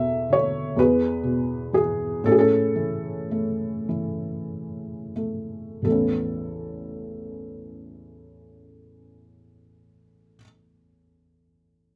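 Classical, lyrical solo piano in a calm, peaceful mood, played with rubato in 6/8 at a slow 28-44 BPM in A major, cut from a longer piece. A felt-muted upright piano carries everything from A1 to E5 over the full 12.0 seconds. Its tone is soft, dark and intimate, with thick felt and short sustain, placed up front in a moderate studio ambience. The opening section slows down through its first 5.9 seconds, moving from E7sus4 to E and settling on A. The second section begins on Aadd9.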